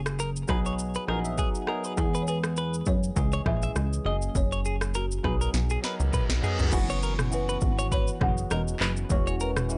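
A lightly reverberant, softly rounded mix carries this joyful, romantic afrobeats excerpt at 101 BPM with a gentle sixteenth-note swing, built on an up-front electronic drum kit with a deep kick, sharp snare, handclaps, rim clicks, shaker, toms and crash, and a punchy, funky analog bass with a fast, decaying filter pluck. A woody, rustic marimba carries the melody in the background through digital delay and plate reverb, while a bell-like tine electric piano with phaser adds chords and a fill at 0.8 seconds, and a bright, twangy clean guitar picks a compressed riff through its own delay. After a drum fill and a reverse cymbal, a very quiet, glassy FM pad enters at 6.7 seconds with ethereal sustained chords as the progression moves from B6 through E, C#m and F#add9 to an E69.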